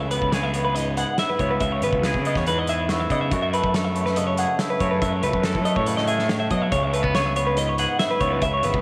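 A playful, bright slice of math rock and midwest emo opens with a clean, compressed twelve-string electric guitar picking arpeggios up front in spring reverb, over a softer, twangy, fingered electric guitar accompaniment and a prominent fuzz-overdriven picked bass. A loose acoustic drum kit enters at 0.1 s with hi-hat, punchy kick and a medium-tuned snare, its rolled-off top and pumping studio-room sound sitting behind the strings. The harmony moves from C#m7 to F#m7 and back to C#m7, all set in a moderate echo-chamber reverb with small-room ambience.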